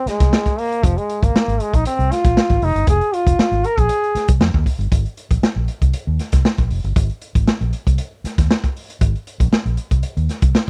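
Funk at 117 BPM in F minor with a sly, hypnotic mood, this dry, close 1970s-style excerpt opens on an Fm9 chord as a bright, roomy trombone plays a solo melody until 4.3 seconds over a dark, round, foam-muted fingered electric bass and a crunchy, gritty breakbeat drum kit with a tight kick and rolled-off top; the bass carries on until 10.5 seconds and the drums until 10.7 seconds.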